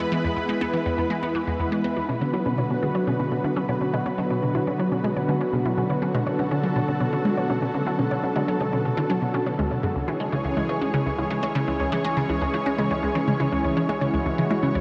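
Mysterious and cosmic, this 122 BPM excerpt of ambient, sequencer-driven space music sets a squelchy, phased blip-pluck riff up front against a thick, warbling unison pad of sustained chords, with a punchy, wave-folded unison pluck entering at 2.1 seconds in the background with arpeggios, all soaked in a huge 7.9-second reverb as the chords move from E to Bm to C#m.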